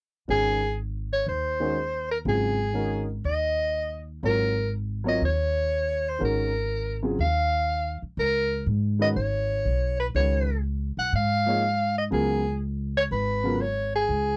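Hypnotic and spiritual, this short modal jazz excerpt swings at 122 BPM in 4/4, cut from a longer piece and built on a single section that moves from Ab9sus4 to Db7sus4 at 8.2 seconds. A warm soprano saxophone carries the melody with vibrato, sitting up front yet with a distant, roomy character in a jazz solo style. Beneath it, a dark upright piano supplies mellow, smooth, vintage-toned accompaniment until 13.6 seconds. The upright bass, plucked with steel strings, gives a woody, thumpy pulse that stands up front throughout. The sound is dry and close, like a 1970s studio session with little reverb.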